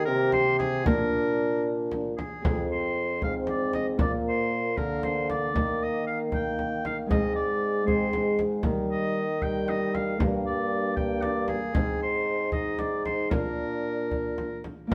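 Heard from further back in a wet stone room, this short cut from a longer piece has the stately, festive air of a renaissance-style consort dance in a straight 6/8. A clear, roomy oboe carries the melody up front. A warm trombone and a mellow bassoon, both with light vibrato and a punchy attack, fill out the harmony and the bass line beneath it. A fingerpicked Celtic harp rings softly in the background, while a deep frame drum, close and dry, joins up front at 0.3 s. After a brief opening phrase, the music moves into a longer second section at 2.4 s, its harmony wandering through minor chords before settling back toward home.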